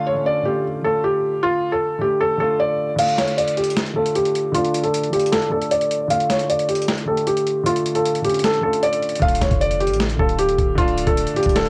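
A felt-muted upright piano carries an eerie melody, soft and intimate with audible action noise, its tone dulled by a low-pass filter, cassette tape, plate reverb and analog delay, over a dark baby grand piano's long-sustained accompaniment on D minor in this half-time trap excerpt at 154 BPM, where a gritty, pitched-down boom bap sampler-style kit enters at 3.0 seconds under a filter sweep with its kick muted until 9.2 seconds, when the thumpy kick comes in alongside a deep, boomy, clean 808-style bass for a hard-hitting finish, all wrapped in the faint mains hum of a cassette home recording.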